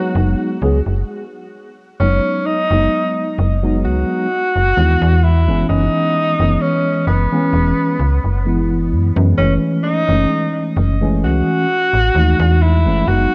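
A nostalgic, melancholic vaporwave excerpt with a light swing, where a clear, vintage-toned tenor saxophone with vibrato carries the melody up front through tape echo over a mellow tine electric piano bathed in lush chorus and a snappy, metallic slap-like FM bass with tube saturation entering at 0.2 s, all heard through light small-room reverb and worn, warbling cassette tape drift, with a stop from 1.1 to 2.0 s before the chords settle into Emaj9/F#, Emaj13 and F#m9.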